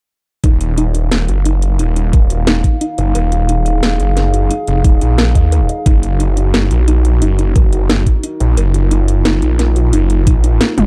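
Mechanical and dark, this excerpt of technical drum and bass runs at 177 BPM in Eb minor, moving from an Ebmadd9 chord to Gb6 at 5.9 seconds. A snarling, distorted saw bass sits up front, growling and aggressive with a detuned unison sawtooth core, overdrive, compression and a moving notch, pumping through sidechain. Alongside it, a deep, nasal analog pad holds sustained chords with a slow attack and long release, its chorus adding a moody shimmer. A soft, round pluck plays arpeggios in the background, its filtered triangle-and-sine tone softened by lush chorus and delay. The drum kit brings a cracking snare, metallic hats and toms with a tape-warm, small-room character, while a knocking electronic kick drops out between 2.7 and 4.8 seconds and again after 8.1 seconds, returning for a single hit at 10.3 seconds. The production is dry and dark, with little reverb.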